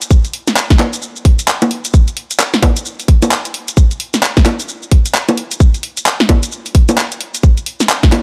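UK garage drum groove at 131 BPM in 4/4, with a bouncy, skippy swing on the sixteenths, taken from a longer piece. An up-front garage kit of bongos, handclaps, hi-hat, shaker and a cracking, overdriven snare plays throughout, sitting over a tight, layered electronic kick that is louder in the mix, both carrying a small-room ambience. The kick drops out briefly from 5.1 to 5.6 seconds before returning to drive the groove to the end.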